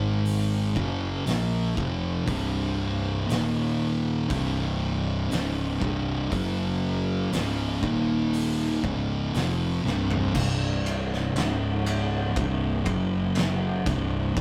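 Stoner and doom metal at a crawling 60 BPM in straight 4/4, this heavy, hypnotic passage is cut from a longer piece. Two thick fuzz guitars carry the riff up front in a low register, one dark and the other warm, both picked and distorted, while a growly, bright fingered electric bass adds overdriven fuzz underneath. An oversized, low-tuned acoustic drum kit enters at 0.3 seconds with a punchy kick, fat snare, dark cymbals, toms, hi-hat and ride, its saturated, gritty sound filling a pumping room. The harmony moves through power chords such as Ab5, F5, C5, Eb5 and F#5, with C5 recurring often. A drum fill at 9.8 seconds marks the point where one guitar stops at 10.3 seconds, and the other guitar, bass and drums push on into a new section to the end. Light reverb and tube saturation give the whole a rough rehearsal-room character.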